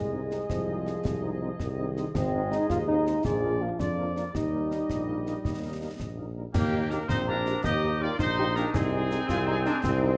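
A spirited, proud military-style march for wind band in 6/8 at 109 BPM in Eb major opens with a euphonium second line, a woodwind section, sustained trombone chords and an up-front tuba bass all sounding together, with a dark, distant trumpet section carrying the melody just after and a mellow, very quiet French horn section adding accompaniment. The euphonium has a vintage tone and light vibrato, the woodwinds have a smooth top and vibrato, and the trombones sit clear in the background. Concert snare drum, concert bass drum and clash cymbals keep the march going with a close, dry sound and dark cymbals. The euphonium drops out at 6.0 seconds, and at 6.5 seconds a pure, expressive piccolo enters high above with vibrato and tongued notes as the opening section repeats. The harmony moves through Ab/C, Ab, Bb7 and Eb under light reverb, and this short cut from a longer piece stops at 10.2 seconds.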